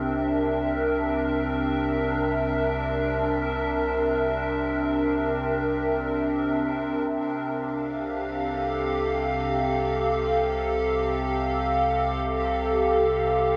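From the first moment, an evolving wavetable pad and a deep sub bass sound together in this luminous, peaceful ambient fragment, cut from a longer piece and drifting in free time in C mixolydian. The pad sits bright and up front, a detuned, sine-based tone that morphs and warbles with a vintage character, its slow attack and long release stretching sustained chords across a range from C3 to F5, colored by chorus, its own built-in reverb and a cassette tape effect. Beneath it, the sub bass holds a round, mellow sine tone on C2, with a fast attack, sitting far lower in the mix. The harmony rests on C9 before shifting to Fadd9/C at 7.2 seconds, with both parts carrying through to 13.6 seconds. A wet spring reverb with a 2.4-second decay and the soft haze of a home cassette recording give the whole a hushed, dreamlike intimacy.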